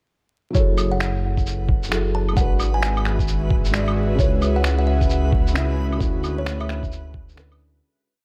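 Vinyl crackle and light digital ambience surround this wistful, ghostly future garage piece at 132 BPM in F# minor, where a muffled, tape-warm two-step kick and a skittering shuffled beat of shaker, claves and finger snaps ride under a deep, rumbling detuned saw bass sustaining the roots, a felt-muted upright piano with audible action noise plays spread chords with syncopated pushes through sidechain pumping and analog delay, a woody kalimba with 12-bit sampler grit offers short answering phrases, a reversed granular swell holds a bright high note in the background from 1.6 s, and an airy, breathy chorused pad enters at 2.4 s, while the harmony moves from F#m9 through G#m7b5 and C#m7 to Dmaj9 as the fade-out begins at 5.4 s.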